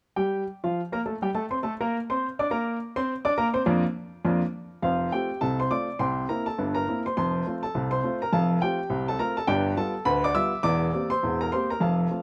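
An upright piano carries this short ragtime passage alone, its woody, intimate tone sitting up front with the clatter of its action clearly audible. The mood is jaunty and lively, moving at 103 BPM in 2/4 with a swung sixteenth-note feel in F major, tuned slightly low to A4 = 439 Hz. The playing spans a broad range, from E1 in the bass to E6 at the top, and has a polished, present quality. The opening phrase moves from F to Bb, and a second phrase begins at 4.8 seconds, passing through C7, F and G7 before settling on C7/E near 10.6 seconds. A light reverb gives the sense of a live performance in a single room, and the 12-second clip is cut from a longer piece.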